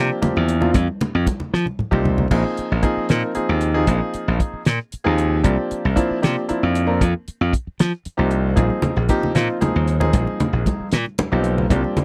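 A dry, close 1970s-style studio sound frames this driving, intense electric jazz fusion excerpt in 6/8 at 77 BPM, where a punchy, glassy slap bass and an intimate concert grand piano with audible action noise sit up front over suspended ninth chords, a damped 70s drum kit with a fat snare and dark cymbals enters at 0.2 s and plays a fill from 1.5 to 2.3 s, and hard-hand congas ring out until 2.3 s before returning at 8.6 s.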